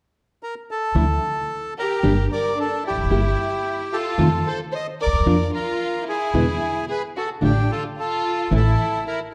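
A dark, warm production with moderate scoring-stage reverb frames this tense, dramatic tango excerpt at 111 BPM in a rubato 4/4, where a reedy bandoneon carries the melody from 0.4 seconds, a full-bodied fingerpicked nylon-string guitar and a woody pizzicato upright bass, the bass sitting up front, enter underneath from 0.9 seconds, and a rich, bowed violin section with vibrato adds a focused second line from 1.8 seconds over chords moving from D5 through Gm, F7 and E to A5.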